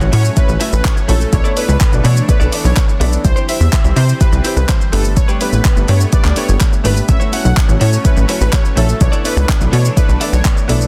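Dance-pop at 125 BPM in A mixolydian, summery and euphoric, built on an up-front deep house kit with a deep kick, handclaps, hi-hat and shaker, a punchy, funky analog bass with a filter pluck and fast attack, a smooth, full-bodied supersaw melody with dub echo entering at 0.1 seconds, and a background of clear concert grand piano, chorused clean electric guitar riff and a thick, detuned pad with phaser, the bass, piano, pad and supersaw pumping under sidechain as chords like A6, E7sus4/B, C and Gadd9 cycle through a dense, heavily limited master in this excerpt from a longer piece.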